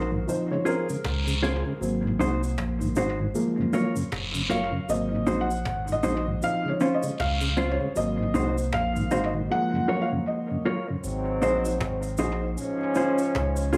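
A sunny, uplifting roots reggae groove at 78 BPM in Ab mixolydian opens with a dark, slightly detuned upright piano taking the lead over clean electric guitar with dub echo, a round, deep sub bass, a slow-rotary tonewheel organ, dry woody cajon and distant cabasa and guiro, before a vintage trombone section with light vibrato enters at 11.0 seconds as the organ drops out.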